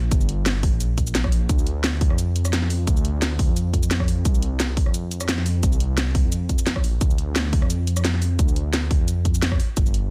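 A dry, dense and heavily limited sound carries this soulful, melancholic liquid drum and bass excerpt in D minor at 174 BPM with a light swing, where a dark, rumbling detuned saw bass sustains between G1 and F2 beneath an up-front punchy electronic kick and a layered kit of cracking snare, bright hats, rim click and cabasa that carries a small-room character.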